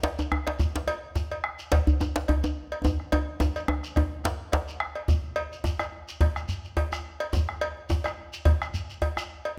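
West African traditional drum ensemble music, festive and driving at 107 BPM in 4/4 with a light swing on the sixteenths, cut from a longer piece. A round, up-front bombo, a metallic cowbell, a grainy, mellow shekere with a compressed, saturated edge, and a medium-tuned djembe with metal rattles played with soft hands carry the groove. A deep second djembe struck with hard hands sits at the front until 4.7 s, and a drum fill from 2.8 s leads into the second section at 5.1 s. Close, detailed microphones catch the djembes dry and near within a moderate recital-hall reverb.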